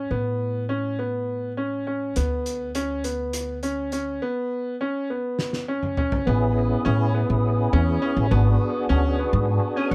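A bright, long-sustaining grand piano plays arpeggios over woody pizzicato upright bass to open this driving, intricate progressive instrumental in 7/8 at 205 BPM in A major. A loose indie drum kit with a fat snare and pumping room sound joins up front at 2.2 seconds on hi-hat, snare and toms, closing its part with a fill that ends at 6.3 seconds. At that point a fat, lightly overdriven tonewheel organ with key click, chorus vibrato and slow rotary speaker enters as accompaniment and adds a brief fill of its own near the end, while the piano and bass sit up front in a dry sound.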